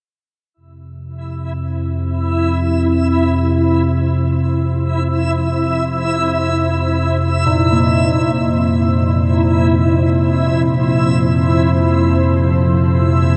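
Bathed in a vast, echoing space with heavy reverb, this desolate, dark ambient drone in free time fades in on an F5 chord at 0.6 s as a chorused analog drone of evolving sawtooth and pulse-wave tones sits up front, joined by a reversed, detuned backwards swelling texture and, in the background, a cloudy, blurred granular cloud pad, until a metallic, meditative bronze singing bowl with slow beating and tape echo enters at 7.5 s in this cut from a longer piece.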